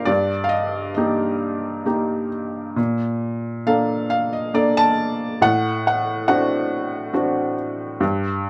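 A felt-muted upright piano is heard from the very start, its muted, mellow tone sitting up front in a light reverb. This short passage, cut from a longer classical piece, is a lyrical piano solo in 3/4 at about 68 BPM, played with a rubato feel. The mood is calm and warm, and the thin felt gives the instrument an intimate, natural softness as it ranges from G2 up to A5. The harmony opens on Eb/G, moves to Bbmaj7 near 2.8 seconds and then to D7/A around 5.4 seconds, before the passage ends at 8.5 seconds.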